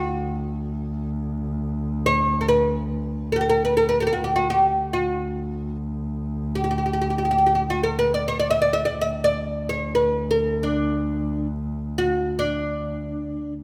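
In free time, this passionate, warm Arabic maqam ensemble piece, cut from a longer work in D maqam huzam with A tuned to 441 Hz, sets a woody, fretless, plectrum-plucked oud with double strings playing the melody up front over a rich, focused, close bowed double bass holding a low D drone with vibrato, both up front in a moderate recital hall reverb throughout.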